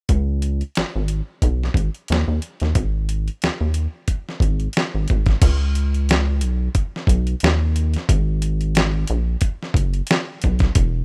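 R&B with a neo-soul lean, this short cut from a longer piece moves at 90 BPM in 4/4, its sixteenths lightly swung and its tuning sitting a touch above concert pitch at A4 = 441 Hz. The mood is soulful and late-night, carried by just two parts that both sit up front in the mix. A dusty, sampler-style drum kit, compressed and gritty, gives a thumpy kick and a fat snare alongside hi-hat and crash cymbal. Beneath it, a rubbery square-wave bass with a hollow, wave-folded, resonant tone and a quick filter pluck bounces between E1 and D#2, holding its notes with a mellow sustain. The arrangement shifts into a second section at 5.4 seconds, and the dry, rough home-demo sound keeps the pair close and unpolished.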